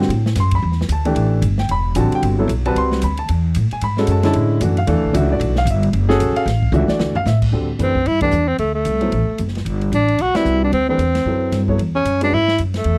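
Searching and open in mood, this modal jazz excerpt swings briskly at 226 BPM in 4/4, centred on D mixolydian and moving between suspended D and E chords. An upright bass sits up front with a woody, thumpy pizzicato pulse on gut strings, while a warm baby grand piano, also prominent, supplies the accompaniment. A swinging big-band drum kit sits lower in the mix with an airy, polished sound, a punchy kick and a medium-tuned snare, and plays a fill at 6.7 seconds leading into the second section. A breathy tenor saxophone enters at 7.8 seconds to carry the melody, its whispered, intimate solo tone shaped by a soft attack, scooped notes and vibrato, and the band hits an accent at 8.2 seconds. The dry, close recording has a 1970s studio character, and the passage is cut from a longer piece.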